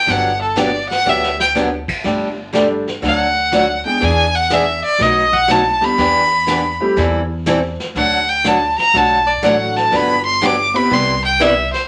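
Down-home and swinging, this western swing country passage, cut from a longer piece, puts a clear, focused fiddle with light vibrato up front on the melody over a bright, boxy picked parlour acoustic guitar, a woody pizzicato upright bass with thumpy gut strings, and a vintage brush kit with dark cymbals in the background that adds a fill at 1.1 seconds, while a warm, open upright piano joins at 2.5 seconds, the band sitting in a wet studio reverb.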